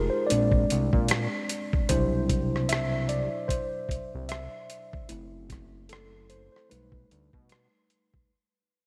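A mellow, clean tine electric piano takes the solo from the opening second, moving through rich chords such as Cmaj9#11 and B7alt in this smooth, late-night R&B and neo-soul excerpt at 75 BPM with a swung sixteenth feel. Beneath it sits a fat, detuned analog bass with a wave-folded sawtooth edge and a filter sweep, while a gritty, compressed, pitched-down boom bap sampler-style kit enters at 0.3 s with a thumpy kick, hi-hat and rim click. The three parts sit up front in a lush hall reverb with a bright 1980s-style digital sheen, and the whole passage is fading out from start to finish.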